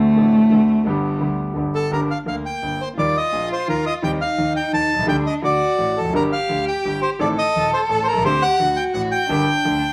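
Captured with a band playing live in one room, this passage is bathed in a wet studio reverb that gives the players a shared, lively space. It is a passionate, melancholic tango in 3/4 with a rubato feel, cut from a longer piece. A single bowed cello, dark and woody with vibrato, sits distant in the mix and leads the opening as a second line before the bandoneon enters at 1.7 seconds. The reedy, airy bandoneon then carries the melody up front in its upper register. Underneath, a bright grand piano with a brilliant, natural tone and short sustain plays the accompaniment close to the listener, reaching deep into the bass. The harmony leans on minor chords with suspended and diminished tension, returning to Gm at 9.3 seconds.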